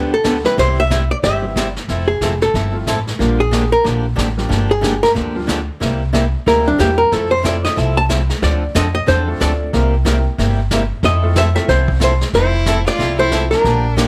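A down-home western swing excerpt in F major at 184 BPM opens with a dark, compressed archtop guitar carrying the melody over bright, boxy picked acoustic guitar, growly pizzicato upright bass, punchy brushed drums and an intimate upright piano with audible action noise, the hollow-body guitar taking a solo from 1.9 to 12.3 seconds before a smooth, bowed fiddle slips in at 12.4 seconds, all under light reverb.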